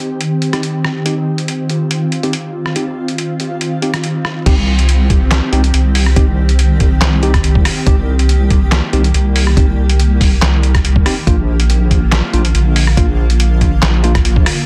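Built on a half-time 4/4 pulse, this heavy, brooding deep dubstep clip opens with a granular cloud pad sustaining blurred, evolving chords, full-bodied and washed in its own reverb. A sampler-style trip hop drum kit soon joins beneath it, compressed and pitched down to a muffled thud, its medium-tuned snare joined by handclaps, hi-hat, rim clicks and crash cymbal, while a mellow tine electric piano drops clean stabs roughened by 12-bit sampler grit, low-pass filtering and dub echo. Through the first 4.5 seconds, filter sweeps on both the pad and the electric piano build toward the drop. At 4.5 seconds a thumpy, compressed electronic kick arrives alongside a deep, soft wobble bass, dark and up front with chorus, which becomes the loudest element. The harmony rests on C minor before shifting to Bb at 11.3 seconds, all under a dense, heavily limited modern master with light room reverb.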